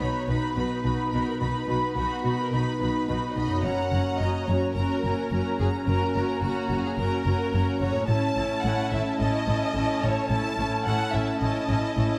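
Rich, focused violins carry the melody high in their range in this triumphant, adventurous cinematic cue, a short cut from a longer piece at 108 BPM in 4/4 and B major, tuned slightly flat to A4 = 439 Hz. A second, lush violin line and violas with smooth, even vibrato fill out the middle. A large, airy flute ensemble sits in the background as a further line, alongside a very quiet, distant clarinet. Dark French horns hold soft-attacked sustained chords from afar, while a very quiet concert harp adds ringing, thumb-plucked arpeggios. Cellos with expressive portamento and an intimate, close double bass section anchor the low end as the harmony moves from B to F# at 3.6 seconds and on to A at 8.1 seconds, set in a moderate scoring-stage reverb.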